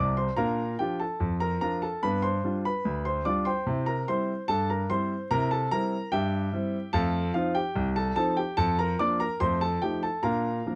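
A brief grand piano fill opens this cheerful, jaunty ragtime excerpt at 73 BPM in 2/4 with a straight feel in Bb major, where a smooth, vintage-toned solo grand piano sits up front, spanning C2 to D6 through a Bb, G7, C7, F7 progression that settles back on Bb at 10.2 seconds, captured by close, detailed microphones in a dry room.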